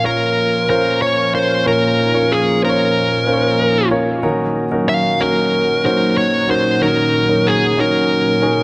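From the opening, a dark, overdriven electric lead guitar carries the melody up front through analog delay, while a clear concert grand piano with deep bass, long sustain and audible action noise accompanies, and a detuned sawtooth pad with chorus holds sustained chords beneath, giving this bittersweet yet driving pop fragment an echo-heavy, chamber-reverb sheen as it moves from Bbm to Ebm7.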